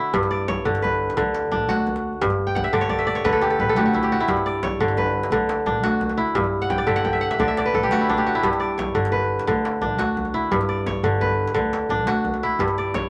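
A flowing 12/8 lilt at 116 BPM, counted in dotted quarters, carries this short passage of West African string and xylophone music in G lydian, rocking steadily between G and D chords. Up front, a bright, ringing kora spins fingerpicked arpeggios across a broad range and breaks into crisp fills at 2.5 and 6.6 seconds. Underneath, a woody, thumpy pizzicato upright bass and a deep, saturated djembe sit lower in the mix, all set in a moderate club reverb that gives the piece a warm glow.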